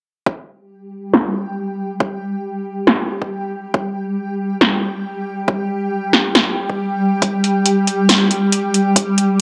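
Cavernous and heavy, this deep dubstep passage moves at 138 BPM in 4/4 with a half-time feel and a loose swing on the sixteenths, and it is cut from a longer piece. An electronic kick drum enters first at 0.3 seconds, deep, overdriven and up front, re-recorded in a large room with its low end and room sound filtered. From 0.8 seconds a granular cloud pad holds sustained chords between G3 and G4, its blurred, evolving sine tone fading in slowly and trailing off with a long release inside its own built-in reverb. A deep house drum kit joins at 1.1 seconds, bringing a punchy snare and metallic hi-hats, overdriven and darkened by low-pass filtering, also captured in a large room. A filter sweep runs across the drums for the whole stretch, while a moderate spring reverb lends the mix a lingering, cavernous tail.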